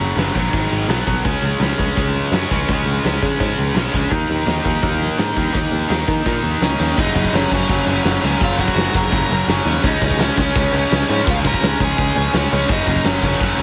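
A bright, overdriven guitar riff opens this rowdy, rebellious punk rock cut in F# major at 168 BPM, joined at once by a growly, foam-muted picked bass and then a big acoustic drum kit with a punchy kick, fat snare, crash and hi-hat ringing in a stone room. At 6.6 seconds a dark, smooth lead guitar takes up the melody through tape echo, just ahead of a drum fill at 6.8 seconds, and a thick, very quiet fuzz guitar slips in at 12.7 seconds just before the cut ends. The dry, heavily compressed sound has a radio-like squeeze, with the double-tracked rhythm guitar pushed up front.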